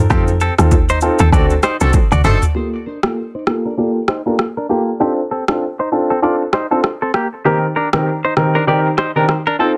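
A dense, heavily limited modern mix with light reverb frames this sultry, mellow afrobeats excerpt in G minor, moving at 98 BPM in 4/4 with a swung sixteenth-note feel. An electronic afro-pop drum kit sits up front with a deep kick, rim click, shaker and toms, roughened by vintage 12-bit sampler grit and soft clipping on the snare, while very quiet, ringing congas and bongos played with soft hands join only until 2.4 seconds. A woody, punchy log drum bass with a fast attack and decaying FM tone carries the low end through that opening stretch, as a band accent and drum fill lead over F7 and D7 chords, and a smooth-topped horn section with light vibrato slips in briefly from 1.8 seconds with plate reverb. A polished, present grand piano plays accompaniment throughout, softened by a low-pass filter and plate reverb. A bright, twangy, direct-recorded clean electric guitar picks a compressed riff coloured by warbly pitch drift, low-pass filtering and digital delay. 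From 2.6 seconds a filter sweep runs over the second section as the harmony settles on Gm9 and then Cm7/Eb.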